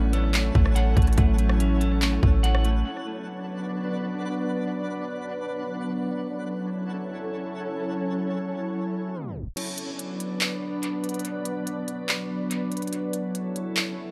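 A glassy FM pad with ensemble chorus and sidechain pumping opens this floating, dreamy cloud-rap excerpt at 143 BPM in a half-time feel. Joining it at once are dark, picked clean electric guitar arpeggios with tape echo, a boomy 808-style bass and a twinkling granular texture with an octave-up shimmer, while a trap drum kit with a hard-clipped kick, crisp hats, handclaps, rim clicks and crash cymbal drives the opening bars. Guitar, bass and drums then fall away, leaving the pad and texture over chords moving between A6 and Bm, until a tape stop at 9.2 seconds brings the drums back at 9.6 seconds with the kick muted beneath the ethereal pad in an echo-heavy mix.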